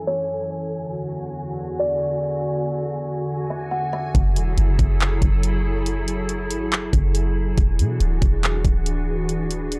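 Spacious and ethereal, this atmospheric cloud-rap fragment in F# minor moves at 140 BPM in a half-time feel: a glassy FM pad with ensemble chorus, built-in reverb and sidechain pumping sustains F#m9 and E9 chords while a woody, hollow-sounding kalimba plays a short melody through analog delay during a filter sweep, until at 4.1 seconds a soft, round 808-style bass and a trap kit with knocking kick, bright hi-hats and handclaps enter up front in a dry, gritty hardware mix.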